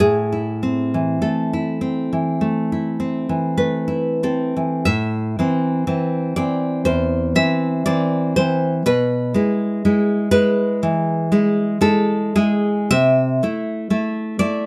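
A fingerpicked nylon-string guitar, woody and full-bodied with the warm character of old strings, carries this passionate, intimate romantic piece alone, sitting up front in light reverb and ranging from E2 to E5. In A minor, tuned to A4 = 439 Hz, it moves in a free rubato 4/4 at roughly 43-63 BPM, with an opening phrase giving way to a new section at 4.9 s. The harmony rests on Am before shifting to E/B at 8.9 s and settling on Am/C at 12.9 s as this excerpt breaks off.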